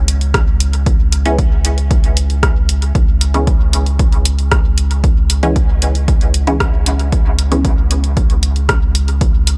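A round, up-front sub bass pumps with sidechain through this meditative, hazy dub techno excerpt, joined by a punchy electronic kick, a layered deep house kit of hi-hat and rim click trailing dub echo, and a muted, detuned chord stab that enters at 1.3 s and drops out at 7.7 s, its filter sweeping while phaser, dub echo and sidechain pumping shape it in a dry mix.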